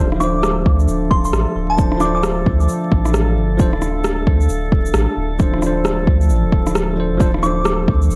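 A glassy, warbling synth bell carries the melody from 0.2 to 2.2 seconds and returns briefly near 7.4 seconds, its vintage FM tone roughened by 12-bit sampler grit, chorus and analog delay. The piece is melancholic, rainy future garage at 133 BPM in 4/4 with a swung sixteenth feel, resting on a single Dm7 chord in D minor. A bell-like tine electric piano plays clean, direct accompaniment through tape echo. A dark, detuned analog pad holds sustained chords in the background with chorus, and both pump with sidechain, as does the round, soft dub sub bass sitting up front. An overdriven rim click and shaker re-recorded in a large room are soon joined by an overdriven electronic kick drum hitting deep and forward, while a calm texture of drifting glass harmonics hovers on A4 with chorus and its own reverb. The overall sound is dry and gritty, with transformer saturation and vinyl crackle, and the passage is cut from a longer piece.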